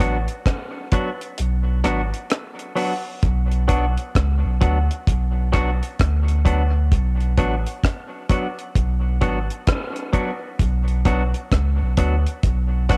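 Dub reggae with a heavy, deep mood, cut from a longer piece and resting on a B minor chord throughout its 13 seconds. A round, sine-like sub bass sits up front from the start, its fast attack giving way to sustained notes in the low register. A deep reggae drum kit enters at 0.3 seconds, dry and dark with a tight kick, rim clicks and hi-hat under a rolled-off top, and the kick drops out between 1.4 and 3.2 seconds. Further back, a clean, compressed semi-hollow electric guitar plays fingered accompaniment with a hollow-body tone, colored by cassette tape and dub echo. The drums carry the same cassette tape character, and the whole home recording sits in a small room with light reverb and a swung sixteenth-note feel.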